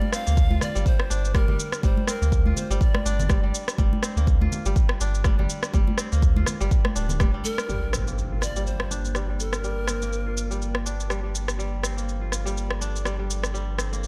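A dry, close-sounding mix opens this hypnotic afro house excerpt, where a deep, round sine sub bass pumps under a layered, tape-colored electronic kick up front, while acoustic congas and a produced electronic rim click and shaker set a swung groove. A bright, crisp fingerpicked kora ringing through delay carries the arpeggios throughout, and a breathy, woody pan flute with gentle vibrato sings the melody in two short phrases, the first over a minor seventh chord. At 7.7 seconds, just after the kick and congas have dropped away, a background impact marks the shift to a minor ninth chord and a filter sweep moves across the kora. From 8.5 seconds an ethereal, airy detuned pad adds soft chorused chords deep in the background.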